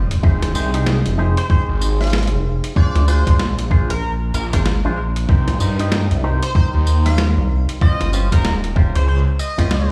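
A dry mix, heard as if through a big sound system in a bare stone room, carries this playful, swaggering glitch hop cut at 95 BPM in F minor with a swung sixteenth feel: a thumpy, pitched-down electronic kick sits up front beside a gritty boom bap sampler kit of hi-hat, high-tuned snare and tambourine; two basses, a rubbery, hollow square bass and a swirling, tube-saturated, phased detuned saw bass, fill the low end; a clean, dark electric guitar through an envelope filter adds stabs with sidechain pumping and digital delay; and from 1.4 s an edgy, tearing sync lead with chorus, vibrato and delay rides over the Fm7, Bb7, Cm7 and Eb13 changes.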